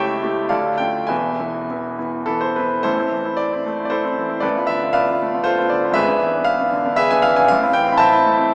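Bathed in a wet church reverb yet carrying a small-speaker sound, this brief excerpt of a bittersweet, passionate romantic character piece for solo grand piano moves in a rubato 3/4 at roughly 101-122 BPM in A minor, the intimate, up-front piano ranging from E1 to B5 with its action noise audible as the harmony passes from A7/C# through Dm and E before a new phrase at 2.9 seconds travels through Bm7b5/A and E7/G# back to Am.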